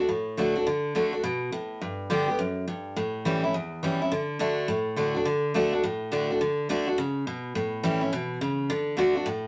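A bright, full-bodied picked steel-string dreadnought acoustic guitar plays alone and up front for the full 9.5 seconds of this rollicking, rowdy rock fragment at a brisk 209 BPM with a swung eighth-note feel in D major, moving from D through G and A7 back to D, with fresh strings, audible finger squeak and a moderate studio room around it.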